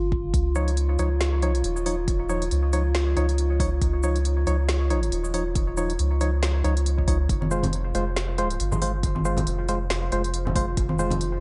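Heavy and cavernous, this deep dubstep fragment moves at 138 BPM in a half-time feel with a swung sixteenth-note lilt, cut from a longer piece. A soft, round dub sub bass sits up front from the start, ranging from Eb1 to Db2 beneath a dark, detuned analog pad that holds sustained chords with a slow attack, a moving notch and a touch of chorus. An electronic kick lands deep and layered, joined by a deep house kit whose woody snare, smooth hats and shaker keep the groove lean. A hollow, organ-like stab with a noise layer and a fast, decaying attack punctuates the bars, spread through chorus and dub echo. The harmony rests on Dbadd9 before turning to Fm around 7.3 seconds, and at 7.4 seconds low-tuned acoustic congas with a thin skin and soft hands enter, trailing dub echo. A light digital ambience frames the mix, and the top end stays dull and rolled off.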